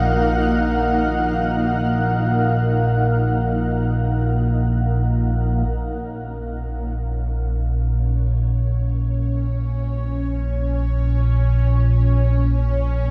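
Cavernous and unsettling, this dark ambient drone fragment rests on a nasal, detuned analog drone blending sawtooth and pulse tones up front, first crowned by a cloudy, blurred granular pad of sustained chords that drops away at 5.7 seconds, when a resonant, bubbling stepped-filter texture fades in and a filter sweep begins moving through the drone, the recording steeped in a huge, cavernous reverb and a cassette-tape grain.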